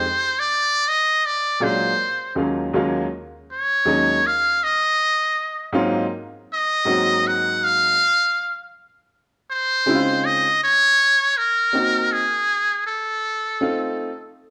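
Mellow and cool, this jazz-tinged hip hop fragment, cut from a longer piece, moves at 80 BPM with a swung sixteenth-note feel, as a buzzy, breathy trumpet with a metal mute carries an up-front solo melody with vibrato over a woody, polished upright piano that comps through chords such as Bb7b13, Ebm11, Ab13 and Dbmaj9, the two playing live together in a large studio with moderate reverb until the trumpet's final note at 14.3 seconds.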